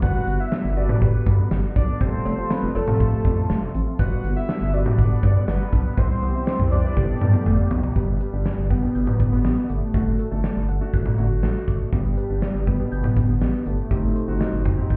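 Nostalgic and upbeat, this synth-pop excerpt moves at 121 BPM in a straight 4/4 in G major, its chords drifting from Gmaj7 through Fadd9 and Cmaj7 before settling on D/G, G and a closing Cm/G. A gated 80s drum kit sits up front with a punchy kick, a medium-tuned snare, hi-hat, toms and cowbell in a big, airy room, and a drum fill between 7.0 and 8.0 seconds carries the music into its second section. Beneath it, a rubbery square bass bounces along, hollow and dark, with a fast-attack filter pluck. The fat analog lead carries the melody with a detuned sawtooth and sub-octave body, mellow vibrato, phaser and tape echo, while a warm concert grand piano adds open, long-sustaining accompaniment with deep bass. In the background, a soft round pluck traces chorused, decaying arpeggios, and an evolving, warbling vintage pad holds slow-attack chords until 7.9 seconds. The whole mix sounds muffled, as if heard through a wall into a club, with a reverberant haze around it.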